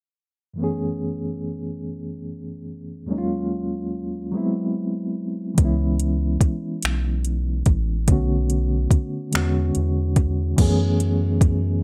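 A slow six-eight R&B groove at 48 BPM in F# minor sets a sultry, late-night mood in this excerpt, where a mellow, reedy electric piano with fast tremolo opens alone on chords like F#m11 and G#7alt before a round, deep analog bass and an electronic drum kit of soft kick, finger snaps, metallic hi-hat and crash join at 5.6 seconds, all in light reverb.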